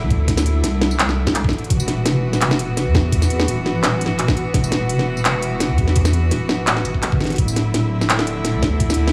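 Half-time drum and bass at 169 BPM in 4/4, with a slight swing on the sixteenths, this tense, dark passage is cut from a longer piece. A deep, soft wobble bass with a detuned, saturated tone and a chorus effect runs the full 9.1 seconds, sitting low between D1 and E2. Above it, a bright studio cello section holds sustained, bowed chords with light vibrato and an earthy ensemble character, pumping against the sidechain. The chords move from D5 to Esus2 at 1.7 seconds and back to D5 at 7.4 seconds. An electronic kick drum with a layered, knocking punch and an industrial drum kit up front enter together at 0.1 seconds, the kit's clanging snare, crisp hats, handclaps and tambourine carrying a tape-warm edge. Light reverb and a small-room digital ambience frame the mix.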